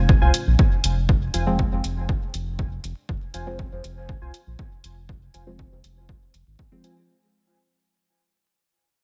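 Nocturnal and hazy, this dub techno fragment in F dorian moves at a straight 120 BPM over a single F minor chord, with a punchy analog kick and hi-hat sitting up front alongside a round, deep sawtooth-and-sine bass that pumps against the sidechain. A warbling, lo-fi synth keys riff with a nostalgic, detuned pulse-wave tone runs through chorus, low-pass filtering and dub echo under a filter sweep, while a very quiet, moody pad holds sustained chords beneath. From 1.5 s a soft, mellow chord stab with a filter pluck joins, treated with chorus, phaser and dub echo, as vinyl crackle colours the dry mix and the whole cut fades out across its 7.1 s.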